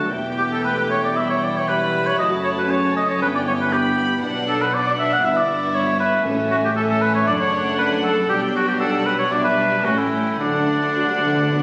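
This lively, graceful passage from a quick classical-period orchestral movement moves at 117 BPM in 4/4 with a rubato feel. An up-front, close-miked oboe sings a second line over a chamber violin section carrying the melody with light vibrato and sul tasto softness, and a floating studio violin section joins the second line at 0.1 seconds. Beneath them, a background viola section, a smooth-topped cello section and a clear, pure double bass section supply bowed accompaniment and bass, while a dark, distant French horn section holds sustained chords as the harmony travels from Em to a close on D. Very quiet timpani played with hard mallets sound at 6.2 seconds and return in a fill from 10.4 seconds, and the ensemble sits in a reverberant scoring-stage space captured on a phone in the room.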